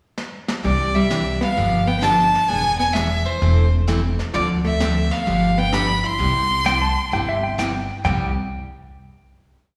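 A swung 4/4 pulse at 130 BPM opens this short, playful western swing piece in C major, with a vintage brush kit tapping out a fill before settling into sweeps on the snare, kept soft and rolled-off in the background. A woody, thumpy upright bass plucks a two-beat root-and-fifth line up front, while a bright, full-bodied dreadnought acoustic guitar picks four-to-the-bar rhythm beneath. Leading the cheerful tune, a clear, focused fiddle carries motif-based song phrases with light vibrato, shadowed by a dark, clean hollow-body jazz guitar that plays a harmony line mostly in sixths. A twangy lap steel slides in near the end at 6.7 seconds with compressed blues licks, before the band lands on a final chord at 8.0 seconds. Plate reverb and slapback echo color the fiddle, guitars and steel, and the whole performance carries the feel of a live club set heard through the venue's PA, with a touch of room ambience.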